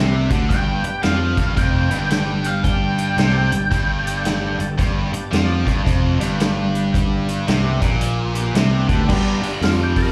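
Blues rock power trio with a southern rock edge, this raunchy, driving excerpt swings at 112 BPM in G mixolydian, as a tight, double-tracked distorted guitar riff and a growly, punchy picked bass drive over a vintage kit with a punchy kick and rolled-off top, while a dark octave-fuzz lead guitar with wah and slapback echo sings its high melody from 0.5 to 8.5 seconds, and a gritty, key-clicking tonewheel organ, turning through a slow rotary speaker, holds thick sustained chords before taking a brief solo at 9.1 seconds, all heard live through a club PA with moderate room reverb.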